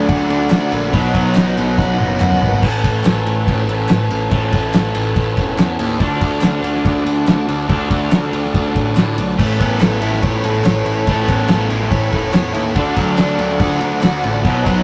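Classic rock with a driving, sunny feel, cut from a longer piece and played in a straight 4/4. Two overdriven guitars carry the riff: a crunchy, bright one holds down the low-to-middle register throughout, while a biting, up-front guitar plays for the first 2.6 seconds, drops out, and returns at 9.4 seconds. Underneath, a fuzzed, picked electric bass growls low, and a cloth-damped drum kit gives thuddy, fat snare hits, a tight kick and dark cymbals, with a fill leading into the second pass at 2.6 seconds. A shouting tonewheel organ sustains chords in the background through a slow rotary speaker with chorus vibrato, and a crisp group handclap sits far back in the mix. The rough rehearsal-room recording has tube saturation and a short, wet booth ambience, with the harmony cycling through D, B and Aadd9.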